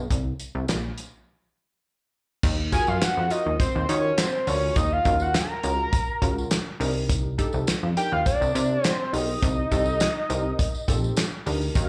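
Heard through a club PA with moderate room reverb, this danceable early-eighties boogie funk excerpt opens on a punchy, plucky analog bass, a dry, damped 70s drum kit with tight kick, dark cymbals and handclaps, and a jingly tambourine in the background, before a fat, wave-folded analog lead with vibrato and slapback echo and a detuned, chorused polysynth comp arrive at 2.7 seconds, and a lush, phased string machine ensemble surfaces only at 11.8 seconds.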